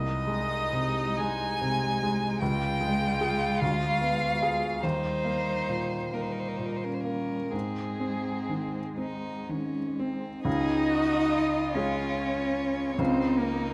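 A focused, vibrato-laden violin carries the melody of this tender, rubato slow movement for piano quartet, excerpted from a longer piece in 6/8. A second violin and a cello with a soft attack and expressive portamento weave supporting lines beneath it, over a clear, intimate grand piano accompaniment whose action noise is audible. The close, detailed sound sits in a moderate recital-hall ambience, and the harmony moves to a new section at 10.5 seconds.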